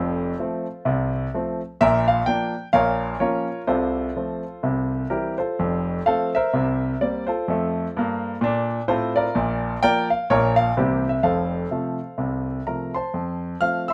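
A solo concert grand piano opens this swinging, exuberant stride jazz passage in F major at 127 BPM, its intimate, up-front tone pairing deep bass with audible action noise and short sustain across a span from F1 to F6, set in a moderate studio reverb as the harmony moves from F through Bb, Bbm and C7 before returning to F, the playing lasting until 13.9 seconds in a fragment cut from a longer piece.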